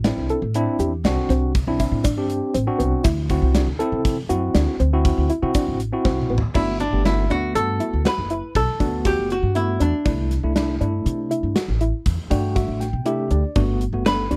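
A driving, intricate progressive instrumental in 7/4 opens with clean chords on a tine electric piano, woody pizzicato upright bass, a gated 80s drum kit with bright cymbals and a tight kick, and arpeggios from a soft, nasal synth pluck with chorus, while a grainy tube shaker sits briefly in the background from 0.8 seconds. After a drum fill at 6.0 seconds, a compressed, dark hollow-body archtop guitar carries the melody through tape echo from 6.6 seconds, and the electric piano later adds a fill of its own before the passage is cut off. The sound is dry, with the drums, bass, piano and guitar up front.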